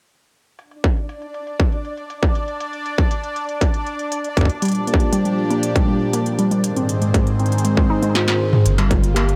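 A distorted electronic kick at 119 BPM drives this intricate, melancholic IDM excerpt in G phrygian alongside an overdriven industrial kit of crisp hats, clanging snare, struck metal and toms under a filter sweep, joined by a bubbling, resonant stepped-filter texture. A swirling phased pad and a warbly dusty pluck arpeggio arrive at 4.6 seconds over Gm7/Bb and Ab, before a drum fill leads to a round analog bass on Gm7 at 8.7 seconds, with lo-fi synth keys following shortly after, all set in light digital ambience.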